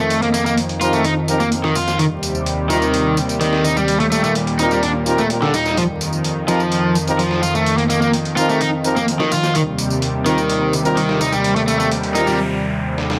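Breakbeat with an energetic, funky drive, this cut from a longer piece pairs a gritty, overdriven sampler-style drum kit of hi-hat and snare, re-recorded in a small room, with a tape-toned, layered electronic tambourine and a bright, up-front electric guitar riff with tube saturation and digital delay. A lush, detuned sawtooth pad sustains F7sus4 and Eb6 chords beneath soft-attack brass stabs with light vibrato that enter at 0.8 seconds, the whole set in a moderate studio reverb with vinyl crackle. A background noise sweep arrives at 11.9 seconds, and the guitar, brass and tambourine stop at 12.4 seconds for a short break capped by a drum fill.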